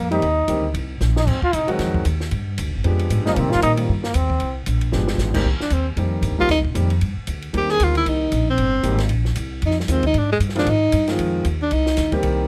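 A bright, punchy trombone with light vibrato solos until 4.6 seconds before a clear, soft-attacked tenor saxophone takes over the melody at 5.6 seconds in this smoky, late-night swinging jazz excerpt, supported by a woody pizzicato upright bass up front, an accompanying warm grand piano, and a compact cocktail drum kit with dark cymbals, a high-tuned snare, a punchy kick and two short fills, all captured in a close, detailed sound with little reverb.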